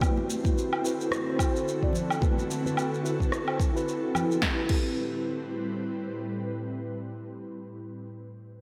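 Sunset chillout in A dorian at 109 BPM, smooth and warm, with a swung sixteenth-note feel and a spacious concert-hall reverb that gives this short excerpt a big arena sound. A mellow tine electric piano, clean through its built-in speakers and touched with tape and slapback echo, comps over an ethereal, airy pad of detuned sawtooth and triangle layers with chorus and phaser, moving from D13 to Am9 at 4.4 seconds. Up front sits a deep electronic kick, joined by a punchy deep house kit of snare, rim click, shaker, woodblock and crash, plus acoustic congas in the background, until the drums drop out at 4.9 seconds.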